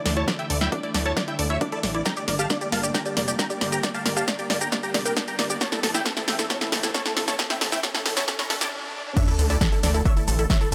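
A huge, euphoric supersaw lead carries the melody through this driving, emotional uplifting trance excerpt, its bright detuned sawtooth tone colored by phaser, filtering and digital delay, while a thick pad holds sustained chords and a vintage, warbling unison pluck spins arpeggios in the background, both pumping with the sidechain. Underneath, a gritty, saturated synth bass and a punchy analog drum machine with an up-front snare, hi-hat, shaker and crash are soon joined by an electronic kick, with a very quiet riser and sub drop adding effects throughout a filter-swept build-up and drum fill. After a brief stop at 8.7 seconds, the drop lands with an impact at 9.2 seconds, where a very quiet, mellow second pluck line enters amid light digital ambience.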